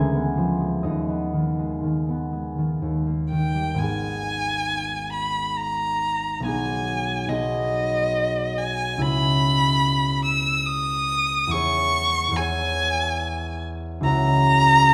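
In a flexible, rubato triple metre, this lyrical romantic classical fragment for violin and harp opens with the concert harp alone, its thumb-plucked chords ringing up front. At 3.3 seconds a single bowed violin enters with the melody, rich and expressive, colored by vibrato and portamento. The duo sits in a moderate recital hall reverb that gives the passage a warm glow.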